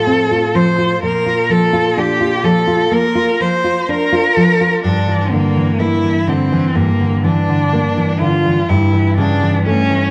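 A bowed cello carries the elegiac, melancholic melody with vibrato and expressive portamento, sounding both warm and distant while still sitting up front, its line touched by tape echo. Beneath it, a dark, full-bodied nylon-string guitar gives thumb-plucked accompaniment through chords such as Bb, Em7b5/G and A7/G. This unhurried, rubato fragment of a romantic duo for cello and classical guitar has an echo-heavy mix with moderate spring reverb and small-room ambience.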